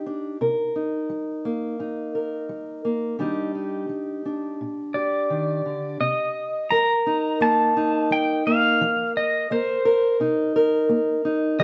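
A clean, warm pedal steel guitar carries the melody from 4.9 s, played with fingerpicks, slide and volume swells, compressed and up front in this melancholic, intimate acoustic folk-pop ballad cut from a longer piece. Beneath it, a dark fingerpicked acoustic archtop guitar, also up front, carries the accompaniment from the start with audible finger squeak, moving through Cm7, Ebmaj7 and F7sus4. The band plays live together in one stone room, whose moderate reverb gives the close performance a gentle sense of space.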